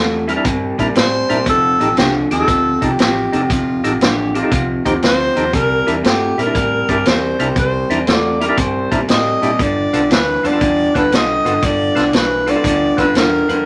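A slightly broken-up, lo-fi electric guitar riff and a dark, foam-muted fingered bass open this laid-back, rollicking electric blues shuffle, joined almost at once by a punchy vintage drum kit with a rolled-off top and a percussive tonewheel organ, lightly overdriven through a slow rotary speaker. From 1.0 seconds a clear, close-miked tenor saxophone carries the jazz-style melody with vibrato and a soft attack, up front in a moderate club ambience. A gritty, amplified harmonica adds brief second lines at 4.0 and 8.1 seconds, with tongue slaps and scooped notes, as the excerpt moves from C7 through F7 and back to C7 before reaching G7.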